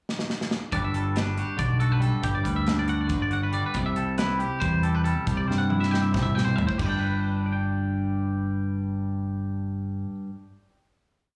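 A drum fill from a polished, airy studio kit with a punchy kick and medium-tuned snare opens this short, wistful yet bright math rock and midwest emo piece in 7/8 at 276 BPM, before two clean, compressed electric guitars with slapback echo enter at 0.7 seconds, one bright and twangy repeating an ostinato and the other warm and up front rolling fingerstyle arpeggios, over a dark, round fingered electric bass locked to the kick, moving from Gmaj7 to C and settling on a final G chord at 6.8 seconds, all heard as a live gig through the venue's PA with club reverb and small-room ambience.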